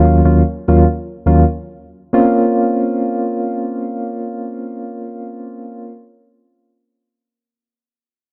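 Soft, round electric-piano-like synth keys sit up front with chorus and tremolo, moving from Ebm7 to Bbmadd9 at 2.1 seconds in this hypnotic, sultry afrobeats fragment at 103 BPM in Bb minor, framed by light reverb and a dark production.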